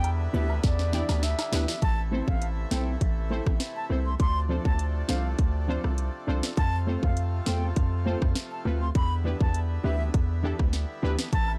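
A straight 4/4 dancehall groove at 101 BPM drives this hypnotic, tough excerpt in A minor, built on an electronic island pop drum kit with a tight kick, sharp snare and metallic hats, overdriven and up front, with a drum fill from 0.6 to 1.8 seconds. Beneath it, a hard-hitting 808-style bass sits up front with a punchy, heavy sine tone and a noise layer, while woodblock and cabasa add distant, roomy percussion in the background at the opening and again at 11.5 seconds. A breathy wooden flute carries the melody with close-miked, expressive tonguing and vibrato, trailed by tape echo, and for a brief moment a soft, breathy flute-like synth lead with chorus and tape echo adds a second line. Reedy, full accordion chords pump under sidechain, joined by detuned, brassy sawtooth synth stabs with chorus and a clean, fingered electric guitar playing arpeggios in the background through ensemble chorus and tape echo. 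The chords move from Em7 to Am, Dm7, F and back to Em7, and the dark production keeps the sound dry and warm.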